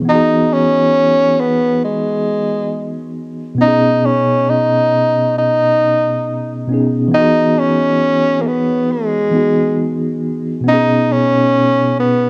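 Hip hop in a dreamy, nostalgic vein, this brief excerpt sits on a slow, swung groove in 4/4 and is cut from a longer piece. A clean tine electric piano carries the accompaniment through a combo amp, its tones shimmering with medium tremolo and softened by a low-pass filter as it moves between Emaj7 and B6 chords. From 0.1 seconds a breathy tenor saxophone takes the melody as a jazz-style solo, close-miked and up front, with a subtoned, warm timbre and light vibrato, also rounded off by a low-pass filter. Both parts sit forward in the mix, the saxophone a touch louder than the piano. A moderate spring reverb and small room ambience surround the sound, while a worn cassette-tape character adds warbly pitch drift that deepens the faded, hazy feel.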